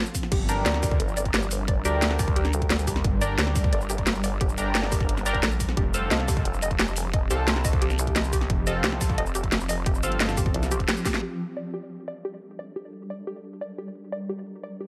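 A swarming, detuned drone and a nasal, band-passed chord stab open this tense, mechanical fragment of dark technical drum and bass in G minor at 176 BPM, soon joined by a punchy electronic kick, an overdriven kit with cracking snare and bright hats, a warbling lo-fi pluck arpeggio, a thick detuned saw bass and an up-front wobbling vowel-sweep bass, moving from Gm to F before a drum fill at 11.1 s gives way to a filter sweep on the drone from 11.2 s as the kick, stab and wobble bass drop away.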